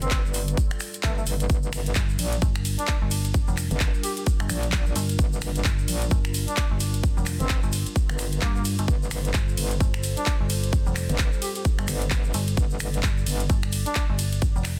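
A dense, heavily limited, modern mix with little reverb opens this bouncy, aggressive bass house excerpt in G minor, moving at 130 BPM with a 16th-note swing and shifting from F to Gm7 and back to F. An up-front, punchy electronic kick and a big-room dance kit with snaps, handclaps, metallic hats and ride drive the groove, joined by a grainy tube shaker in the background. A saturated, wobbling metallic bass and a digital FM bass entering at 2.0 seconds pump under a deep, detuned analog pad, while a veiled, distant bucket-muted trumpet plays a solo melody through dub echo until 14.0 seconds.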